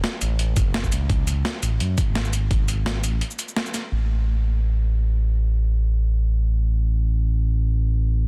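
A swung 170 BPM breakbeat of gritty, overdriven sampler-style hi-hat, shaker and medium-tuned snare, muffled by low-pass filtering and joined from 0.6 to 2.6 s by a thumpy, overdriven electronic kick, drives this warm, dreamy liquid drum and bass excerpt until the drums drop out at 3.8 s, leaving the up-front, mellow sawtooth-and-triangle synth bass gliding with portamento and vibrato through to the close, in a dry, dense, heavily limited mix.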